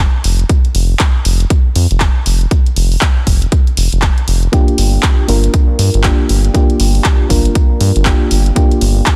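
Late-night and smooth, this short deep house excerpt moves at 119 BPM in 4/4 with a 60% swing on the sixteenths. A round, deep analog bass opens at 0.0 s, its blend of sawtooth, sine and triangle tones sitting up front between F1 and G2 and pumping under sidechain compression. A layered, overdriven house kit of handclaps and hi-hat enters at 0.2 s, and a punchy, overdriven electronic kick joins at 0.5 s, also up front, both drum parts re-recorded in a large room. At 4.5 s a mellow FM electric piano arrives with soft, warbling Gm7 stabs between Bb3 and Bb4, its vintage, dark character colored by chorus, cassette tape and dub echo. Digital ambience surrounds the parts, and the dense, heavily limited master keeps the groove thick and forward.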